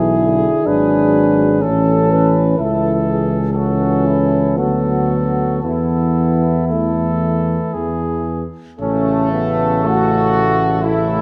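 From the opening moment, a mellow cornet carries the melody of this tender, hymn-like classical brass band fragment in A major, moving in a rubato 3/4 at 55-63 BPM, over a distant, roomy French horn section on the second line, a warm euphonium and a close-miked trombone tucked into the background as accompaniment, and an up-front tuba bass with light vibrato and a smooth top, the ensemble set in a moderate scoring-stage reverb as the passage, cut from a longer piece, turns into a new section at 8.8 s.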